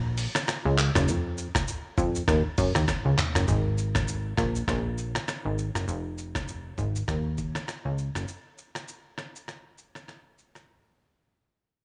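A plucky analog bass opens this short afrobeats excerpt, its punchy, funky sawtooth and square-wave tone shaped by a filter pluck with a fast attack that then decays, a metallic edge of ring modulation running through it, sitting up front from the very start. The mood is sultry and smooth, moving at 100 BPM in 4/4 in Eb minor, with a 58% swing on the sixteenths giving the groove its lilt. A trip hop sampler-style drum kit enters at 0.2 seconds, pitched down, compressed and gritty with vintage 12-bit sampler character, built from a thumpy kick, hi-hat, rim click, shaker, toms, finger snaps and handclaps, also placed up front. The bass drops out at 8.3 seconds while the drums carry on until 10.7 seconds, leaving a brief break to close. The sound is dry and close, and the whole passage fades out from 3.5 seconds onward as it is cut from a longer piece.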